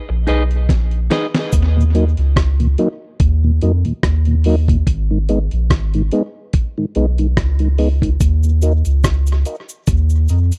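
This meditative, heavy dub reggae excerpt in Eb minor at 72 BPM opens on a short break: a clean, picked electric guitar bathed in spring reverb and tape echo sits over a deep, round sub bass, while a gritty, compressed sampler-style drum kit with a thumpy kick and fat snare plays a fill. From 1.8 seconds a mellow, dark tonewheel organ takes over the accompaniment, its slow rotary speaker and chorus vibrato up front beside the saturated bass, as the chords move between Abm and Ebm and a filter sweep begins at 4.9 seconds. A faint, close and dry cabasa with tape echo flickers briefly, then returns at 8.2 seconds over the lightly swung groove of this dry, 1970s-style studio sound.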